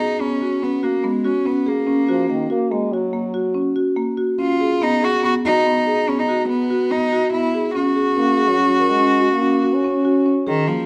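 Moving in a straight 7/4 at 143 BPM, this playful, shimmering fragment of contemporary chamber music in F# major pairs an intimate, nasal sul tasto cello melody, bowed by one player with light vibrato, against woody, boxy marimba arpeggios struck up front with medium mallets, while a mellow, distant French horn adds a second line at 2.1 s and again from 8.2 s, within a moderate recital hall reverb over chords moving from Bsus2 through D#m9 and Emaj9 to F#add9.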